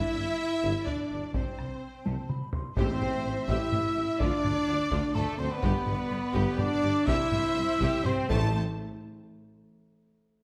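Dark and dramatic, this short excerpt of an epic orchestral film score moves at 126 BPM in 3/4 in A minor, with up-front mellow French horns holding sustained chords over a distant, intense violin melody, a smooth second violin line, lush violas, very quiet cello, double bass and soft tuba carrying the bass, hard-stick taiko drums entering at 0.9 seconds with a fill just before the timpani strikes at 2.8 seconds, and an airy, hollow flute joining at 1.8 seconds, all in a recital hall reverb as the chords pass through Am7, Dm, G and C.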